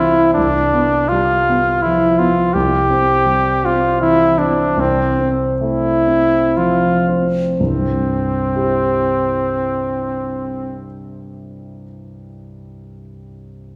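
Serene and tender, this short romantic classical excerpt for trumpet and grand piano moves in a rubato 3/4 between 56 and 86 BPM in C major, slowing down from 1.5 to 7.6 seconds as the harmony settles from G7/C toward C. A clear, punchy trumpet with light vibrato sings the melody up front until 10.8 seconds, while a polished, present grand piano accompanies and carries on alone to 13.8 seconds. A reverberant scoring-stage ambience suggests a church or concert hall.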